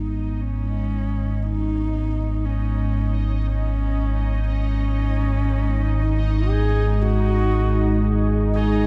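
A deep, rumbling drone sits up front in this dark, ominous ambient fragment, its slow attack and long release giving a heavy, sustained foundation bathed in lush chorus and its own reverb. Above it, a single horsehead fiddle fades in with a husky, intimate tone, its airy bow, light vibrato and gliding portamento carrying a close, brooding melody through a diffuse ambient delay. A bubbling stepped-filter texture also fades in, its resonant sawtooth stepping randomly under chorus and reverb. In the background, a pure, mellow quartz singing bowl rings soft arpeggios with slow beating until 2.5 seconds, while a moody, detuned analog pad with a sub octave enters at 4.5 seconds to hold sustained chords. The whole piece floats in a huge reverb tail of 8.1 seconds, and the production stays dark and warm throughout this section cut from a longer work.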